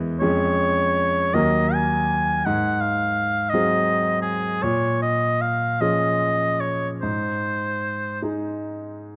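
A smooth, vintage-toned concert grand piano with deep bass and long sustain opens this tender, serene romantic classical excerpt, joined at 0.2 seconds by a clear oboe singing the melody with light vibrato in classical style, both up front and close in a moderate recital-hall reverb as the duo moves in a rubato 6/8 until the oboe stops at 8.2 seconds and the piano continues to 9.2 seconds.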